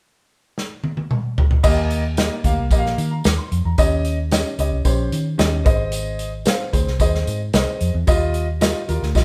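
A straight 4/4 groove at 112 BPM drives this danceable, uptempo 1960s-style soul excerpt in Eb major, opening with an airy, punchy drum kit fill from 0.6 seconds before a woody upright piano, a dark, round, foam-muted electric bass and a jingly tambourine in the background join at 1.6 seconds over Eb, Eb7, Ab and Ebadd9 chords, the band sounding live in a moderate stone room.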